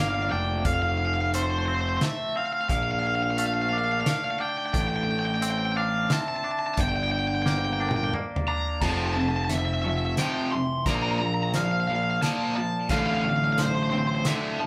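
Recorded as a band playing live in one room with moderate reverb, this euphoric, cinematic post-rock excerpt in F major moves at 88 BPM in 3/4, with an overdriven raw garage guitar carrying the melody up front over twangy tremolo guitar arpeggios, ringing hard-mallet vibraphone arpeggios in the background, a round, fuzzy picked bass and a loose indie drum kit with a fat snare and dark cymbals that enters at 0.6 s, until a drum fill leads into a build-up at 8.8 s where a bright, double-tracked distorted guitar riff joins.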